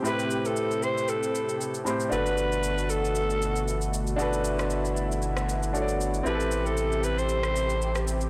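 Soulful amapiano at 116 BPM in G major, swung on the sixteenths, where a growling, raspy alto saxophone with tape echo carries the melody over clear concert grand piano chords and a lush, detuned unison pad with chorus, while electronic shaker and rim click with soft clipping on the snare tick along and a deep, saturated sub bass enters at 2.1 s, all in a blown-out, overdriven recording with light reverb, cut from a longer piece.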